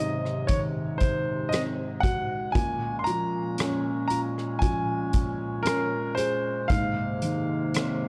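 Heartfelt and hopeful, this slow pop ballad excerpt at 58 BPM sets a clear, polished concert grand piano melody with tape echo and long sustain up front over a soft, felt-muted upright piano accompaniment with audible action noise, smooth sustained woodwind section chords, and a soft-mallet drum kit of hi-hat, boomy kick and rim click entering at 0.3 seconds, all moving from Ab7 through Bbm7 to Abadd9 in a dark, warm production with light reverb and small room ambience.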